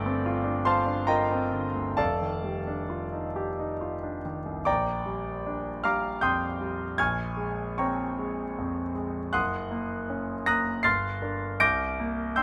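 A concert grand piano carries this short impressionist solo piece alone from start to finish, its tone clear and intimate, with a deep bass, long sustain and the noise of its action audible up close. The mood is hazy and dreamy, set in Bb major and tuned to A4 = 439 Hz. It moves in a rubato 3/4 at roughly 64 to 81 BPM, the phrasing stretching and yielding freely. The playing spans from the low F1 up to a high D7, and the harmony drifts through colourful chords such as Gm11, F13, Bb6, Dbmaj7/Bb and Gb before settling toward Gm7 and C7sus2. An opening passage gives way to a second section at 4.7 seconds, and the recording, cut from a longer piece, ends at 12.4 seconds. A light reverb frames the polished, up-front sound, giving it a close yet gently spacious feel.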